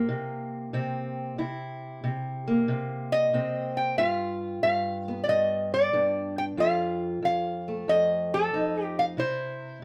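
A moderate studio room holds two guitars playing live together in this laid-back, gritty acoustic country blues, swung in 4/4. A dark, boxy parlour steel-string guitar, fingerpicked and up front, carries the accompaniment from the start through C7, G7 and F7. At 3.1 seconds a bright, nasal lap resonator guitar, played with slide and fingerpicks and also up front, enters with the melody and plays until this short excerpt ends at 9.8 seconds.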